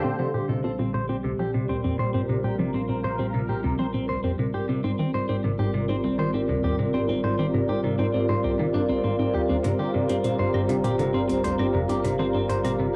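A straight 4/4 pulse carries this short, mysterious passage of ambient, sequencer-driven space music, cut from a longer piece and moving through Bb, Abadd9 and Gm. A sweeping, resonant sawtooth pad sits up front with sustained, detuned chords, its chorus and filter swell giving a bright, cosmic glow. Beside it a clean, twangy electric guitar plays picked arpeggios through analog delay, while a filter sweep runs across the guitar for the full length. Underneath, a hollow, bouncy square-wave pluck repeats a low riff with chorus and delay, and from 0.7 s a warm analog drone hums in the background as a detuned, pulse-width-modulated bass. Electronic hi-hat and claves arrive at 9.6 s, their metallic hats adding a faint tick. Wet studio reverb and the soft haze of a home cassette recording bind the parts together.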